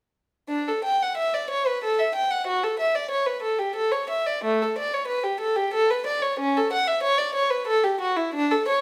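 In a rubato 3/4 at 92 BPM, this radiant, serene classical fragment, cut from a longer baroque-style suite movement for unaccompanied violin in D major, features a single dark, woody bowed violin with vibrato, played up front from 0.5 to 8.8 seconds across A3 to G5 and set in a wet stone room.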